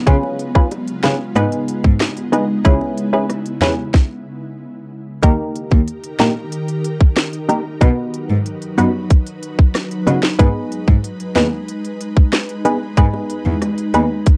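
Dancehall in straight 4/4, tough and hypnotic, built on an overdriven electronic drum kit up front with a tight kick, sharp snare, crisp hats, handclaps and rim clicks, while very quiet, low-tuned bongos played with soft hands sit far beneath. A bowed cello carries the bass line with light vibrato and an airy, intimate sul tasto tone, as punchy sawtooth-and-square chord stabs with a filter pluck and chorus stand forward over an ethereal, detuned pad that breathes with sidechain pumping. A stop from 3.9 to 5.2 seconds clears the chords before the second section moves through D#, B and G#m in this dark, small-room excerpt cut from a longer piece.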